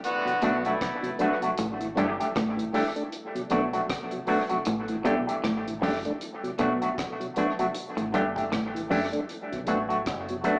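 Laid-back and hypnotic, this roots reggae excerpt opens with a clear, up-front horn section with light vibrato that drops out after 2.2 seconds, as a deep drum kit with a tight, dry kick, hi-hat and rim click sets a swung groove over Bm7 and A7sus4 chords. A mellow, lightly overdriven tonewheel organ turns through a slow rotary speaker, a bright, twangy envelope-filtered guitar sits up front, a slightly broken-up guitar riff with spring reverb lingers behind, and a dark, round, foam-muted bass rumbles in the background, all in a live-room sound with a small-speaker character and lush studio reverb.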